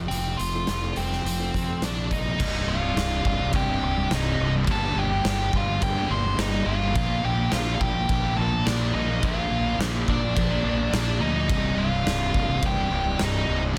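Quiet-loud alternative rock in C minor at 106 BPM, dark and cathartic, this cut from a longer piece opens with a sludgy distorted guitar riff, a growly, punchy fuzz bass and a nasal lead guitar with a parked wah and plate reverb carrying the melody up front, while a boxy, bright fingerpicked steel-string acoustic guitar plays arpeggios in the background from 0.3 to 2.0 s. An oversized, low-tuned acoustic drum kit sits gritty and saturated in a big pumping room, with a boomy kick, a medium-tuned snare and dark cymbals. At 2.4 s a double-tracked crunchy overdriven guitar and a thick fuzz guitar join the riff very quietly as the harmony moves through Cmadd9, Gm7 and Bb, all pressed into a dense, heavily limited modern master.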